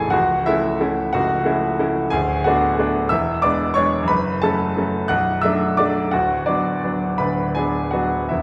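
The recording places a bright baby grand piano up front in a wet recital hall, its reverb hanging for about 1.5 seconds around each note. This is a romantic classical character piece for solo piano, lyrical and warm in mood, cut from a longer work and lasting about 8.4 seconds. It moves in 6/8 at roughly 52-62 BPM counted in dotted quarters, with a flexible rubato feel. The piano's brilliant, natural tone spans from A0 up to F#6. The harmony passes from A/C# through Bm7/D, E7 and F#m, then settles onto Bm7 and Bm/D by 6.1 seconds.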